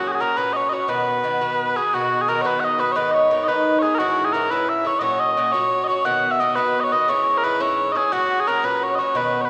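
Celtic folk in a straight 6/8, lively and bright, this brief excerpt features mellow small bagpipes carrying a sweet, continuous melody with vibrato, up front as the solo voice. Beneath them, an Irish bouzouki picks its doubled metallic strings in accompaniment, also close in the mix, as the chords move through F#, B, G#m and C#m. The whole is bathed in the lush reverb of a church or concert hall.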